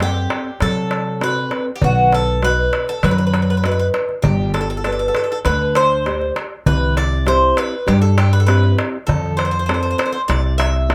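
Recorded in a small room with a moderate, short reverb and a faint mains hum beneath it, this brief cut from a longer piece of Greek bouzouki band music has a cool, bittersweet mood in a straight 4/4. Up front, the picked bouzouki carries the melody with a bright, metallic ring from its double courses, some of them octave-doubled, staying within a fairly narrow upper range. A classical nylon-string guitar fingerpicks the accompaniment across a broad span, its warm tone marked by audible finger squeak. The pizzicato upright bass sits prominently in the mix, woody and thumpy on gut strings, while a small metal-shell darbuka adds crisp, high hits with a live-room character. All four parts play throughout the 10.9 seconds as the harmony moves from F# diminished through B, G and C before arriving at F.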